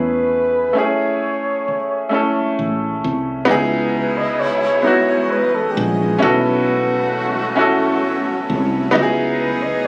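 Slow, sultry six-eight R&B with a yearning ache, where a breathy, mellow flugelhorn sings the melody with slapback echo over a bright grand piano and a woody, growly fretless bass, joined at 3.5 seconds by clear horn-section stabs and at 4.6 seconds by a shimmering, ethereal pad in the background, all heard through the club-like room sound of a phone recording.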